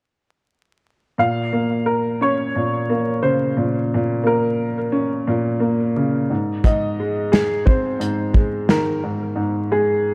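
A dark, boxy baby grand piano with audible action noise and a cassette-tape tint carries the low accompaniment of this moody boom-bap hip-hop excerpt in Bb minor at 88 BPM, while a woody, slightly detuned upright piano with tape echo sings the melody above, and an up-front soul drum kit with a tight kick and rolled-off top plays only from 6.6 to 8.9 seconds, just after the shift from Bbm to Ab, all set in light studio reverb with vinyl crackle.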